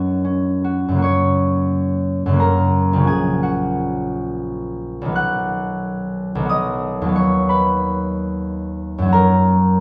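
In an unevenly flowing, rubato 3/4 at about 89 BPM, this serene, peaceful classical excerpt for solo concert harp in F# major, tuned to A4 = 442 Hz, features a mellow, ringing, fingerpicked harp placed up front and spanning A#1 to F#6, its chords moving from F# toward B in the wet reverb of a church or concert hall.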